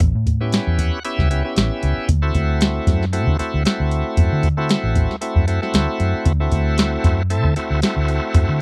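A soft vintage rhythm box sets a straight-eighth soul blues groove at 115 BPM with a lightly swung sixteenth feel, its deep kick, crisp snare and metallic hats roughened by overdrive, while a dark, round, foam-muted electric bass holds down the low end in D mixolydian. A bright, shouting tonewheel organ enters at 0.4 seconds, up front with key click, slow rotary speaker and a touch of overdrive, and plays a fill from 0.5 seconds until the harmony moves from A7 to D7 at 2.1 seconds. The sound is dry and close, like a 1970s studio, giving this swaggering, soulful cut an intimate, punchy presence.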